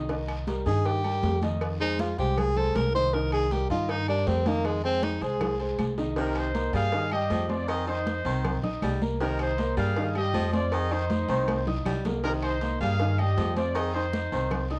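Salsa in C minor at 158 BPM, this danceable, driving fragment of a longer piece has the intimate feel of a home cassette recording in a small room. A dark, woody upright piano with long sustain and a thumpy, gut-strung pizzicato upright bass carry the accompaniment throughout, with the bass sitting up front. Behind them, bright high-tuned congas, a tight vintage cowbell, ringing metal-shelled agogo bells and timbales, a raspy distant guiro and very quiet woody claves fill out the percussion. A breathy, whispered tenor saxophone solo with light vibrato leads the first section, capped by a drum fill at 5.4 seconds. At 6.2 seconds a mellow trumpet section takes the melody while a punchy, forceful baritone saxophone adds a second line beneath it, and another fill arrives around 11.1 seconds. The harmony moves between Cm7 and Fm7, shifting to F7 in the second half.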